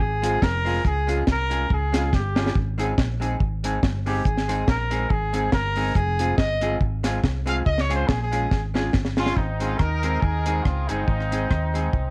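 Ska with a joyful, bouncy swing, cut from a longer piece: a punchy, roomy trumpet with light vibrato carries the solo melody until 8.6 seconds, over a clean, picked hollow-body jazz guitar with tape echo and a round, amped short-scale electric bass sitting up front. A deep reggae drum kit, dry and dark with a high-tuned snare, tight kick, hi-hat and rim click, adds fills at 2.1 and 8.5 seconds, and from 9.2 seconds a distant horn section takes up the melody, also touched with tape echo. The chords move between Fm, Db and Ab under a light reverb.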